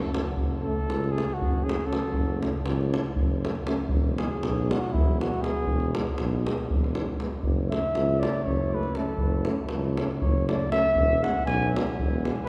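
Heard through the long, wet reverb of a church or concert hall, this brief cut from a longer Balkan brass band piece has a virtuosic, bittersweet air. It moves at 239 BPM in eighths through a straight 7/8 in F# minor, tuned to A4 = 436 Hz, with the harmony alternating between F#m and E. A dark trumpet with a smooth top and light vibrato sits up front, playing in a classical style and taking the solo from 0.4 seconds to the end. Beneath it, a tuba carries the bass, and the tuba and one very quiet euphonium share a mellow tone. A second, warm euphonium stays in the background with light vibrato. A tight, acoustic davul sits up front yet carries the distance of a large room, supplying the percussion.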